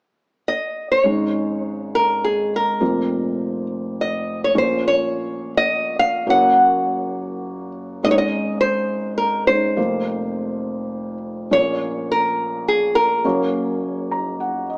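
A boxy, fingerpicked nylon-string guitar carries the melody up front in this intimate, reflective acoustic folk-pop ballad in 3/4, entering at 0.5 s. A soft, felt-muted upright piano joins at 1.0 s with mellow accompaniment, and the two move through a repeating Absus4, Fsus4, Bbm, Gb progression. Light reverb and a small speaker sound frame this short cut from a longer piece.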